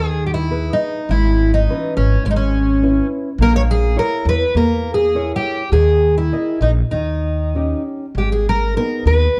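Longing and mournful, this short fado-style ballad moves at 102 BPM in 4/4 with uneven, rubato beats, set in G# harmonic minor and tuned to A4 = 438 Hz. A fingerpicked twelve-string acoustic guitar carries the melody up front, its octave-doubled, shimmering, full-bodied tone sounding fresh-stringed and auditorium-sized. Beneath it, a thumb-plucked nylon-string guitar with a small, fresh-stringed sound supplies the accompaniment. A pizzicato upright bass with a woody, steel-string voice sits up front in the low register. All three parts play throughout the 9.4 seconds, over a progression that leaves G#m for C#m7/G#, A#dim, D#sus4 and D#7 before settling back on G#m at 8.2 seconds. Light reverb and a dark, warm production frame the excerpt, which is cut from a longer piece.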